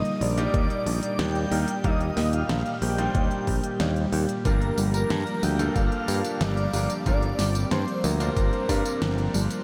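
A straight 4/4 groove from a knocking electronic kick and a pop kit with fat snare, crisp hats and tambourine drives this nocturnal synthwave excerpt, where a growly picked electric bass sits up front beneath a thick detuned unison lead with tape echo, an airy second lead with chorus and phaser floating higher in the background, a shimmering pulse-width pad pumping behind, soft round pluck arpeggios and brilliant grand piano stabs, the mix soaked in a huge dreamy reverb as the harmony moves from Ebmaj7 to Gm7 at 4.5 seconds.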